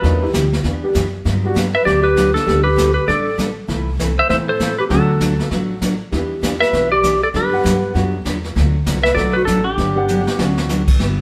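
A twangy, up-front clean lap steel guitar carries the melody of this playful, cheerful western swing country piece at a swung 197 BPM in G major, with a mellow, close-miked clarinet entering as a second line at 1.7 s, a worn, slightly detuned upright piano and a bright, full-bodied picked acoustic guitar in accompaniment, a growly pizzicato upright bass, and a brushed jazz kit with dark cymbals that plays a fill at 10.1 s, the band heard together in a reverberant stone room.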